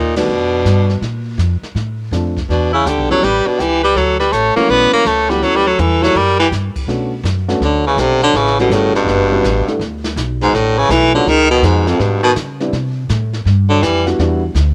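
Swinging and playful, this small-group swing and bop excerpt puts an edgy baritone saxophone up front on the melody with scooped notes and vibrato, while a punchy, forceful tenor saxophone carries a second line alongside it. A woody pizzicato upright bass anchors the low end, a dark, mellow baby grand piano comps underneath, and a brushed drum kit with dark cymbals and a boomy kick sits far back, entering just after the band's opening accent and playing a fill at 5.8 s before the music shifts into a minor-key section at 6.9 s. The saxophones and piano carry cassette tape grit and plate reverb, and the drums share the tape colouring, all in a tight, homespun booth sound.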